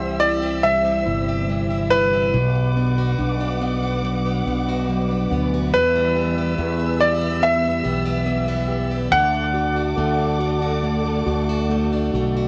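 A home cassette recording in a small, close booth carries this hopeful, tender pop ballad excerpt, with the tape character on the piano, electric piano, strings and guitar. A brilliant, polished grand piano sings the melody up front until 11.7 seconds, over a mellow, clean tine electric piano with analog chorus and a boxy picked steel-string acoustic guitar whose arpeggios trail tape echo and catch the odd finger squeak. Smooth bowed strings with vibrato and portamento hold sustained chords underneath, while an amped, direct fretless electric bass with subtle chorus anchors the low end.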